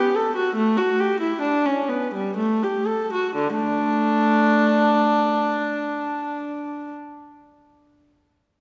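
Bathed in a wet concert-hall reverb, this short fragment of a serene, radiant baroque-style classical suite movement in D major features a single close, up-front solo viola with a dark, nasal gut-string tone, airy bow and light period-style vibrato, unfolding in a rubato 3/4 at 59-71 BPM and slowing through its opening 3.4 seconds.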